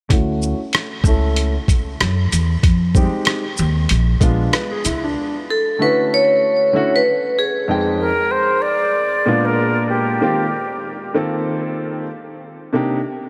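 Soaked in a huge, dreamy reverb, this cool, relaxed jazz-hop excerpt at 95 BPM swings gently in 4/4 over rich chords such as Dmaj9, Fm7 and Bb7b9, with a woody upright piano carrying a low-pass filter sweep. For the first 5 seconds a gritty, pitched-down boom bap kit with a thumpy kick, hi-hat, rim click and shaker sits up front beside a pizzicato upright bass with gut strings. Both then drop away, and a dark, metallic vibraphone played with hard mallets enters at 5.5 seconds with a slow vibrato and delay, joined at 8.0 seconds by a pure, straight-toned concert flute.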